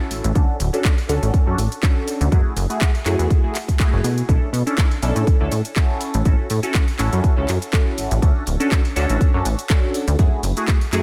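A funky, warbling polysynth comp with detuned sawtooth tones, chorus, phaser and a low-pass filter sweep opens this sensual filtered disco house excerpt beside a very quiet, close tambourine, cycling through Dmaj7, F#m9, Bm11 and A6. A plucky analog bass with tube saturation and a decaying filter pluck sits up front, and both it and the comp pump from sidechain compression. A house kit of handclaps, shaker and warm hi-hats rides a swung groove, with a punchy, layered electronic kick entering at 0.4 seconds, all under light reverb.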